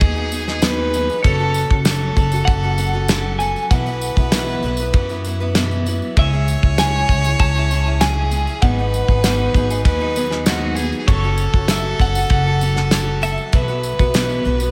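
A straight 4/4 pulse at 98 BPM drives this stirring, wistful indie folk fragment, with a cloth-damped, thuddy drum kit of tight kick, medium-tuned snare and dark ride cymbal, a woody pizzicato upright bass up front, and a jingly tambourine in the background. A picked parlour acoustic guitar with audible finger squeak and a smooth, nasal bowed fiddle with light vibrato fill out the building arrangement. From 1.2 s a bright, twangy, compressed twelve-string electric guitar carries the tremolo-treated melody over chords moving through G#m7, F#m, Bsus4 and C#m, all set in a dreamy mix soaked in moderate plate reverb.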